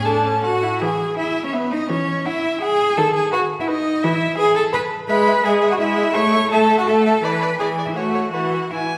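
A warm, expressive first violin carries the melody of this lively, spirited classical-period string quartet movement in E major, its bowed line sung with vibrato, portamento and a soft attack, while a close second violin weaves a second line beneath it. A rich viola fills in the accompaniment with its own vibrato and sliding portamento, and a smooth, even cello anchors the bass, both sitting up front in the blend. Played quickly in 3/4 at 167 BPM with a rubato feel, this excerpt from a longer piece moves through E, B7 and A harmonies, bathed in the wet reverb of a church or concert hall.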